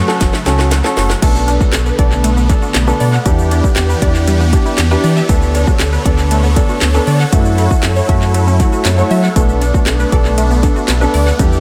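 Dance-pop in B minor at 118 BPM, driving and energetic, tuned slightly flat to A4 = 435 Hz. It opens on a drum fill from a punchy house kit with cracking snare and metallic hats, then settles into a Bm7, Em7, Bm7/D and F#m7 progression carried by huge, bright supersaw chords through a phaser, a deep sine-and-triangle sub bass with an octave up front, and a concert grand piano with a tape echo. A lush, wave-folded unison pluck plays arpeggios in the background, a grainy vintage egg shaker joins at 1.2 seconds, and sidechain pumping drives the synths, piano and bass in an echo-heavy mix with light reverb and digital ambience.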